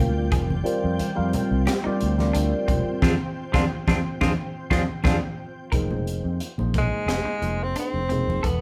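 Recorded with light reverb as a band playing live in one room, this funky, driving electric jazz fusion excerpt at 89 BPM in F dorian sets a bright tine electric piano with phaser, a shimmering, detuned ambient pad with chorus that drops out at 5.7 seconds, clean picked stabs from a semi-hollow guitar, a dark, round fretless bass, a crisp up-front drum kit with a high-tuned snare and tight kick, and low-tuned congas in the background beneath a band accent from 3.0 seconds, before a warm, punchy tenor saxophone with light vibrato and scooped notes takes the solo melody at 6.8 seconds.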